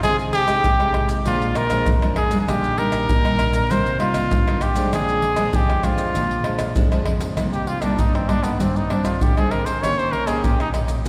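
A clear, jazz-style trumpet with light vibrato sings a bittersweet, nostalgic samba and choro melody at 98 BPM, carrying a solo from 7.4 s as the music settles into C minor, over bright, full-bodied fingerpicked classical nylon-string guitar with audible finger squeak and close, up-front maracas, deep surdo, pandeiro and tamborim, all bathed in the long, wet reverb of a concert hall in this brief cut from a longer piece.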